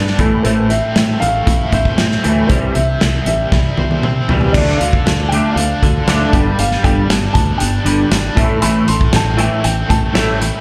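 A woody, dark upright piano melody with slapback echo and analog delay opens this restless, cool indie rock excerpt at 117 BPM in D dorian, alongside a crunchy overdriven guitar riff shimmering with tremolo, a twangy clean guitar riff thickened by ensemble chorus and a round fingered electric bass, while a loose drum kit with a tight, up-front kick joins at 0.1 s and plays a fill from 3.5 to 4.5 s as the chords move from Am and C to Dm, G and back to Am, all heard as a live gig through the venue's PA with club reverb.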